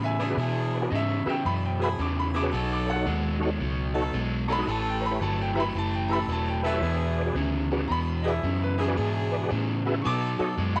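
A bright, woody upright piano solos from 0.0 seconds over a warm overdriven semi-hollow guitar riff and a dark, round, foam-muted fingered electric bass in this rollicking, gritty swung blues at 112 BPM in E mixolydian, cut from a longer piece and moving through E7, B7 and A7, while a clear tonewheel organ with slow rotary speaker and chorus vibrato and a warm jazz-style horn section adding stabs join at 0.2 seconds, the whole mix set in a moderate plate reverb.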